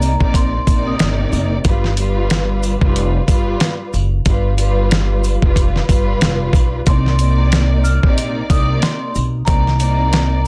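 A gritty, sampler-style soul drum kit sits up front in this reflective, moody boom-bap hip-hop excerpt, its thumpy kick and fat snare compressed alongside hi-hat and shaker at 92 BPM with a 16th-note swing. An upright bass plays pizzicato beneath it, woody and thumpy with a prominent place in the mix. A dark studio string section supplies bowed, lush accompaniment with expressive vibrato and a smooth top, moving from Cm9 to G7 and back to Cm9 at 6.9 seconds. A vibraphone played with soft mallets carries the melody in mellow, airy phrases, ringing with slow motor vibrato at the opening and again from 6.9 seconds. Jingly sleigh bells sit in the background, and light reverb surrounds a dense, heavily limited modern master.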